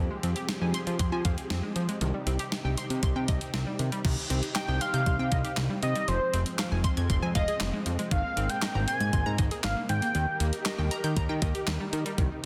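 A fat, saturated analog bass with detuned sawtooth and square-wave tones sits up front in this bright, nostalgic synth-pop excerpt, joined at 0.2 s by a clean 12-bit drum machine with a thumpy kick, fat snare, handclaps, hi-hat and crash, re-recorded in a large room. Beneath them, a vintage string machine voiced as cellos holds full, mellow chords with ensemble chorus, while an analog pluck with a round, ring-modulated, noise-layered tone spins arpeggios through chorus and delay over a progression moving from Fmadd9 through Cm, Fm and Abadd9 to Eb. From 4.6 s to 10.4 s, a bold, retro octave-doubled lead carries the melody with vibrato, chorus and phaser, all framed by light digital ambience and a dense, heavily limited modern master.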